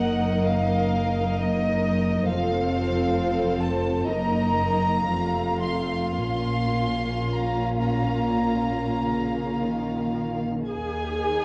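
Classical string orchestra music in a slow, romantic vein, this short passage cut from a longer piece carries a melancholic, elegiac mood, moving in a flexible rubato pulse. The violins sing the melody high in their register with light vibrato and a smooth top, while a second violin line sits beneath, all played softly over the fingerboard for an intimate, close sound. Violas fill in the accompaniment with gentle vibrato and soft attacks, and a woody, dark cello section sits in the background supporting the bass. The double basses anchor the lowest notes with a warm, soft-edged tone and light vibrato. The harmony drifts between Ebm/Gb and F before settling on Bbm at 6.2 seconds, and the chords fall away at 10.7 seconds. A concert hall reverb lends the ensemble a lingering glow, and a worn, warbling old cassette tape quality adds a wavering pitch drift that makes the whole recording feel like a faded memory.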